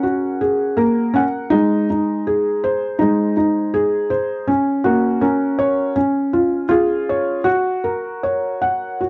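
A dry, close recording with a small room's ambience frames this innocent, sleepy children's lullaby excerpt, where a felt-muted upright piano plays alone, soft, mellow and intimately up front, drifting in a rubato 4/4 around 81 BPM in F# major through chords from F#add9 to G#, F#, C# and back to F# across its 9.1 seconds.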